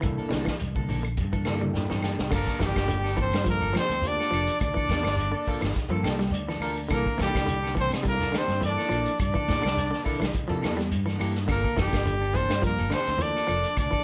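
Driving and intense, this afrobeat cut at 105 BPM in G dorian rides on a tight-kicked vintage drum kit, a round fingered electric bass, grainy shekere, woody claves and congas that drop out at 2.3 s, beneath picked semi-hollow guitar arpeggios, dark clean electric guitar stabs and a barky, overdriven tine electric piano with fills, until a clear, close-miked trumpet with scooped notes takes the melody at 2.3 s over a brilliant trombone second line, all captured as a band playing live in one room with moderate reverb.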